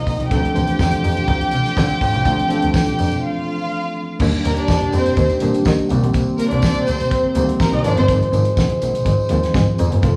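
Dark, intimate strings bowed sul tasto sit up front in this sultry, driving disco fragment, carrying a second line until 8.1 s over a rich, bowed double bass, a worn, slightly out-of-tune tine electric piano, warm sustained chords from a French horn section, a dry, damped drum kit with a fat snare and tight kick, very quiet bright congas and a distant, jingly tambourine, the band captured live in one room with a large studio reverb and a break at 3.2 s.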